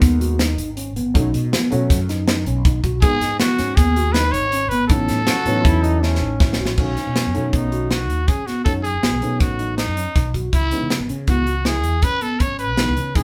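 In a straight 5/4 at 160 BPM, this bright, intricate progressive instrumental in B mixolydian, cut from a longer piece, rides on an up-front, polished studio drum kit with a tight kick, medium-tuned snare, hi-hat and crash, a drum fill landing from 6.0 to 6.8 seconds, while a dark, round fretless bass, a warm grand piano and a clean tine electric piano playing arpeggios fill out the band as it plays live in one room with moderate reverb. A raspy, growling trumpet takes the solo melody from 3.0 seconds, gritty and punchy with light vibrato, and a forceful jazz-style trombone adds a brief second line with scooped notes from 5.3 to 6.8 seconds. The harmony moves from G#m and B7 through A6 to B9 and C#m7.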